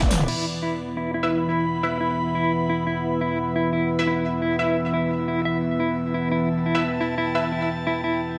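A deep, moody pad of detuned sawtooth with a sub octave sits up front, its slow-attack chords pumping under sidechain and blurred by chorus and reverb. This tense, dark drum and bass excerpt at 174 BPM in E minor rests on an E5 chord. From 0.3 s a clean, fingered electric guitar plays arpeggios through tremolo, delay and a low-pass filter sweep, joined by a soft, breathy pad and, from 1.2 s, a punchy, layered orchestra-hit-style stab ringing with ring modulation, all set in a wet digital room.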